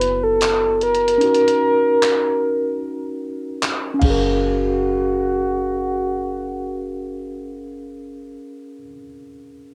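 Smooth and tender, this contemporary R&B fragment in straight 4/4 sets a round, horn-like sawtooth synth lead, with chorus and a vintage warble, against a mellow tine electric piano that sounds as if heard through built-in speakers, both sitting up front in a cassette-tape haze. A deep, boomy sine 808-style bass anchors the low end, while a sampler-style 12-bit drum machine of crash, handclaps, hi-hat and thumpy kick, re-recorded in a large room, drops its kick at 1.2 seconds and falls silent at 4.2 seconds. The lead and bass stop at 8.4 seconds, leaving the electric piano to ring on alone under moderate studio reverb.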